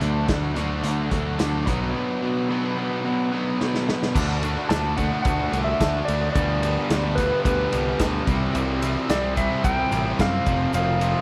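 Swaggering, confident classic rock excerpt in which two raw garage guitars and a sludgy distorted guitar play overdriven riffs in the background over a bright, picked electric bass and a vintage kit with dark cymbals, a punchy kick and a pumping small-room sound, until a drum fill at 3.6 seconds leads into a second section where a grainy tube shaker joins at 4.2 seconds and a clean, compressed lap steel slide melody with volume swells enters at 4.7 seconds under light reverb.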